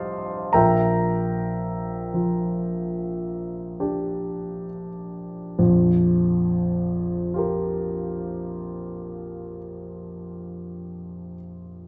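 A solo grand piano opens on a Cm11 chord that settles onto Bb6 by 0.5 seconds, its polished, present tone placed up front with long sustain. This is impressionist classical music in a serene, hazy mood, moving slowly in a rubato triple metre. The opening phrase slows as it unfolds, easing toward a new passage at 5.6 seconds that rests on a Bb5 chord. The piano spans from deep bass notes to a high treble register, and its warm sound is held in a moderate recital hall reverb that adds a soft halo to each chord. The fragment is drawn from a longer piece and ends at 11.9 seconds.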